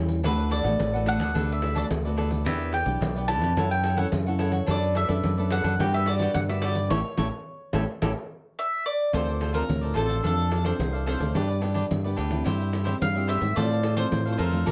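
Heard through a moderate studio reverb, this lively, yearning samba-and-choro excerpt moves at 108 BPM in a straight 4/4. Up front, a woody, double-strung mandolin carries the melody over a growly, punchy fingered electric bass, while a crisp, picked cavaquinho and a small, fingerpicked nylon-string guitar in the background supply the chords, and a jingly pandeiro played with hard hands adds percussion. The band hits an accent from 6.9 to 9.1 s on A7, after which a new section begins on Dm7.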